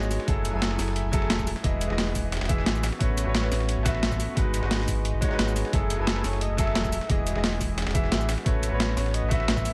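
Liquid drum and bass at 176 BPM with a rolling, lush mood, this cut from a longer piece sets a bright baby grand piano with 12-bit sampler grit and delay over a thick, detuned pad pumping under sidechain, a deep sine sub bass, an up-front overdriven breakbeat kit, a tape-warm soul kit in the background, and a thumpy overdriven electronic kick, moving through F#m9, Emaj7, A69 and G#m7 until a veiled, bucket-muted trumpet with light vibrato enters at 5.7 seconds.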